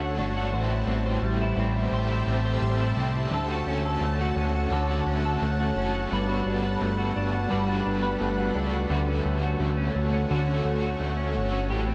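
This dream pop excerpt opens with all four parts sounding together from the first second, settling into a floating, ethereal mood at 86 BPM in D major. A semi-hollow electric guitar sits up front, its dark, clean, fingered arpeggios colored by ensemble chorus and digital delay. Beside it, a fat analog bass holds the low end with a thick, sawtooth-and-square tone, detuned and mellow, with a moving notch shaping its sustained notes. Behind them, a shimmering ambient pad carries sustained chords with an octave-up shimmer, a warbling, vintage, granular character, and its own chorus and built-in reverb. A bright, overdriven stack guitar, picked and double-tracked, adds quieter accompaniment treated with tremolo and subtle chorus. The harmony drifts from Dmaj7 through Am7 back to Dmaj7, then on to Gmaj9 before returning home to Dmaj7, all wrapped in a huge ambient reverb with a 6.8-second decay and a dark production.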